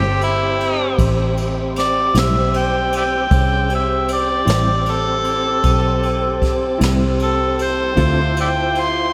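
A dreamy, reverb-soaked mix hangs over this brooding, mournful slow blues in 12/8, where an up-front, mellow harmonica carries a jazz-style solo with light vibrato, scooped notes and tongue slaps, its tone roughened by overdrive. Beneath it, a tonewheel organ holds sustained chords through a slow rotary speaker with key click, a dark, foam-muted fingered electric bass sits round and forward, and a very quiet, clean electric guitar plays accompaniment until 8.2 seconds. A jazz kit played with brushes, featuring a high-tuned snare, boomy kick and dark ride cymbal, enters at 0.2 seconds, and the harmony moves from Am7 to Dm7 at 8 seconds in this short cut from a longer piece.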